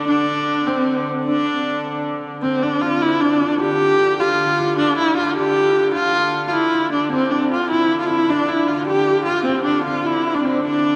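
A medieval dance in a straight 6/8 with a driving, ancient mood, heard as a short cut from a longer piece. A single bowed viola carries the melody up front and close, its tone warm with vibrato, a soft attack, expressive portamento and a touch of slapback echo. Behind it, a concert harp plays a mellow, thumb-plucked second line that rings in the background. A very quiet viola da gamba adds a pure, floating, airy-bowed line, sounding from the start until 2.0 seconds and returning at 7.1 seconds. Beneath them all, a distant hurdy-gurdy holds a nasal, biting, earthy drone on D3. The whole is bathed in a wet cathedral reverb with a long tail and a dark production.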